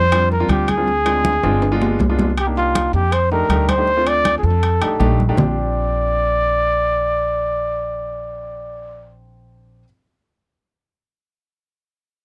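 A breathy trumpet leads this lively, danceable Afro-Cuban jazz excerpt, its dark, whispered solo line carrying vibrato and a soft attack, sitting close and intimate at the front of the mix between F4 and D5. At 160 BPM in a straight 4/4 and the key of Bb major, an upright bass plucks a woody, growly line low in the register, while a baby grand piano adds polished, present accompaniment through chords such as Dm7b5, G7b9 and F13. Congas with a bright, thin skin struck by hard hands sound close and dry, joined by ringing metal-shell timbales with a compressed, saturated edge, and a drum fill arrives from 1.2 to 2.4 seconds. The congas and timbales stop at 5.5 seconds, leaving trumpet, bass and piano to return to the Bb69 chord, and the trumpet drops out at 9.1 seconds. A light reverb gives the ensemble a touch of space in this short cut from a longer piece.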